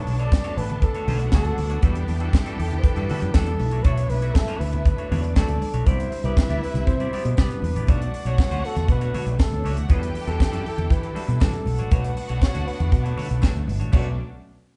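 A moderate studio reverb gives this band-in-one-room disco excerpt a rounded, slightly dulled top end, with the dry, polished drum kit and punchy fingered bass sitting up front. At 119 BPM in a straight 4/4 and B minor, the groove feels danceable and sultry. A breathy, close-miked flugelhorn carries the melody with soft attacks and scooped, whispered notes in an intimate jazz manner, while a dark, bowed string section with vibrato adds an expressive second line and a richer string ensemble holds lush sustained chords in the background. A bright, clean semi-hollow electric guitar picks out the accompaniment, and very quiet congas with hard hands and a jingly tambourine color the percussion beneath the tight kick, high-tuned snare and bright cymbals. The harmony moves between Bm9 and Em11, and a Cmaj9 at 5.9 seconds opens the second section before the progression returns.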